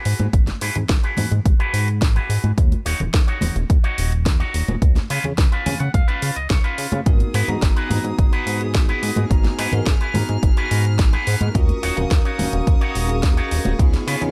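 Nu-disco at 107 BPM in G# dorian, sleek and cosmic, where a twangy envelope-filtered guitar riff rides a glossy pulse-wave synth bass, a punchy overdriven electronic kick up front, a house kit with cracking snare, finger snaps and bright hats, and ringing high-tuned congas in the background, with a clean guitar fill at 5.4 seconds before a bell-like tine electric piano with analog delay and a rich, earthy chamber string section enter at 7.1 seconds, both carrying sidechain pumping.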